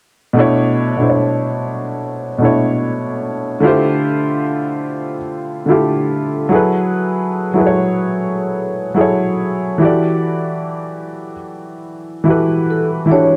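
A woody, slightly detuned upright piano with audible action noise sits up front through cassette-tape grit and a low-pass filter, accompanying on Bm11, Dm11, F#m11 and Em11 in B minor in this reflective, nostalgic hip hop excerpt at 73 BPM with a gentle 16th-note swing. At 12.7 s it is joined by a mellow, airy vibraphone with soft mallets and fast motor vibrato, also filtered, for a brief ringing melody, inside a small room and a dark production.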